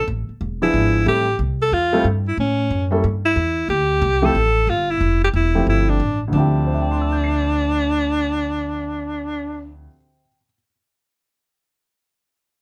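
Small-group swing and bop jazz in D minor, this cool, swinging fragment moves at a brisk 182 BPM with a 4/4 swing feel. A breathy, clear alto saxophone carries the melody up front with jazz vibrato, while a woody pizzicato upright bass sits close beside it and a natural-toned baby grand piano comps from 0.6 seconds, lingering alone until 10.7 seconds. Light reverb surrounds the group as the harmony passes through E7b9, Am7 and A7 before settling on a rootless Dm11 at 3.7 seconds, with Dm11 returning at 6.3 seconds, where a new section begins.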